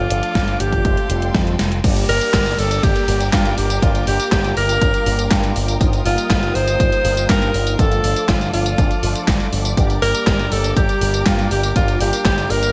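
A bright alto saxophone carries the melody up front in this nostalgic, melodramatic italo disco passage, with a soft attack and pop-style vibrato, trailed by tape echo. Beneath it, a lush symphonic string section holds sustained chords in the background, while fat, warbling analog synth brass with chorus punctuates with bold stabs. A picked electric bass with an envelope filter anchors the low end in G minor at 121 BPM in straight 4/4, and a gated 80s digital drum machine adds handclaps, hi-hat, tambourine, crash and a gated-reverb snare, with a punchy electronic kick entering at 0.4 seconds. A drum fill at 1.6 seconds leads into the main section at 1.8 seconds, where a very quiet downlifter sweeps through until 5.8 seconds as the harmony moves through chords such as Gm, Bb6/G and Ebadd9/G. Light reverb gives the whole a polished, vintage dance-floor sheen in this fragment cut from a longer piece.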